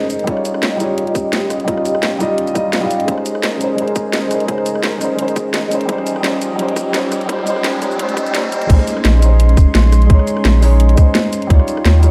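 Soulful and melancholic, this liquid drum and bass excerpt at 171 BPM in Bb dorian opens with a soft, felt-muted upright piano, run through a low-pass filter and delay, and an airy, breathy pad with chorus, both carrying filter sweeps through a build-up that cycles between Eb9 and Bbm11. A tight, overdriven electronic kick and a layered kit with a cracking snare and bright hats drive the groove, while a background riser from 5.2 seconds leads to the drop at 8.7 seconds. There a deep, round sub bass enters up front beneath the mellow, intimate piano.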